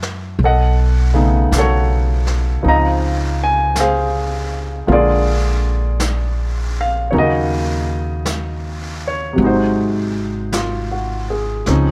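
Up front, a baby grand piano with a natural, short-sustained tone carries the accompaniment from C3 to Bb5, moving through chords of Cb9, Dbmaj9, Bb7, Ebm7 and Ab7 in this romantic, late-night jazz ballad. Beside it, an upright bass plucked on gut strings sounds woody and thumpy, sitting close to the listener in the low register from Ab1 to Gb2. A brushed drum kit sits well behind them, distant and roomy in a studio space, its medium-tuned snare and hi-hat played with brushes at a lower level than the piano and bass. The tempo is a slow 54 BPM in 4/4 with a gentle swing on the eighth notes. All three instruments play throughout this roughly 12-second passage cut from a longer piece, and a light reverb adds a soft sense of space.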